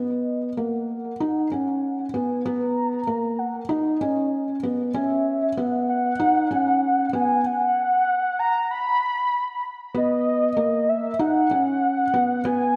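A lush, reverberant hall wraps this luminous, hopeful electronica excerpt in B major at 96 BPM, moving from Bmaj7 to F#7sus4. Up front, a velvety, detuned synth lead carries the melody with chorus, vibrato and digital delay, while a felt-muted upright piano plays a dark, intimate riff with audible action noise and its own digital delay. A filter sweep on the lead shapes a build-up that gives way to a drop at 9.9 seconds, back on Bmaj7.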